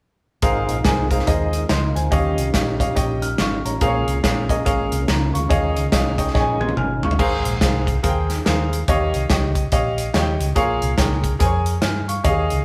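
An uplifting, hopeful uptempo gospel excerpt in Ab major at 142 BPM with a swung feel opens with a full band in a stone room: an intimate concert grand piano with audible action noise and deep bass accompanies up front, a round, dark hollow-body electric bass anchors the low end, a punchy studio drum kit with bright cymbals drives the band, and a lightly overdriven tonewheel organ with third harmonic percussion, chorus vibrato and fast rotary speaker holds sustained chords in the background until a drum fill at 6.3 seconds leads into a new section at 7.2 seconds, where the organ stops and the rest continue through chords like Eb9 and Bbm7.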